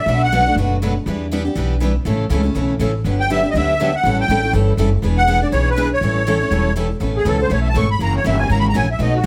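A moderate studio reverb surrounds this short cut from a longer piece of acoustic string swing, jazz manouche style, with a musette accordion and upright bass sitting up front. At a brisk 242 BPM in 4/4 with a swung eighth-note feel, the mood is playful and swinging, with harmony moving through Bm7, Em7, A, Gmaj7, A7 and E7 before settling on Aadd9 and F#7. The reedy, shimmering musette accordion carries the melody, sounding a brief phrase at the very start, then returning at 3.2 seconds and taking a solo from 7.0 seconds to the close. Two picked steel-string acoustic guitars supply the accompaniment throughout, both bright, one with audible finger squeak and the other full-bodied. Underneath, the pizzicato upright bass is woody, growly and thumpy, anchoring the harmony in its low register.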